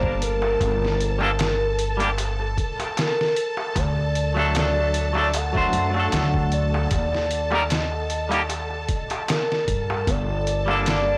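A woody, gut-strung pizzicato upright bass sits up front in this smoky, dark trip hop excerpt at 76 BPM in G harmonic minor, with a lightly swung sixteenth feel and a compressed, pitched-down sampler drum kit whose thumpy kick and medium-tuned snare carry a touch of studio reverb. A sparkling, picked clean electric guitar with harmonic tremolo and tape echo accompanies a breathy, full-bodied sine lead with vibrato, subtle chorus and echo, while a mellow sawtooth string-machine cello pad holds slow-attack chords beneath the Gmadd9, D and Eb changes. A crisp metal-shell darbuka played with soft hands sits distant in the background, and the dry, gritty hardware sound adds transformer saturation and vinyl crackle.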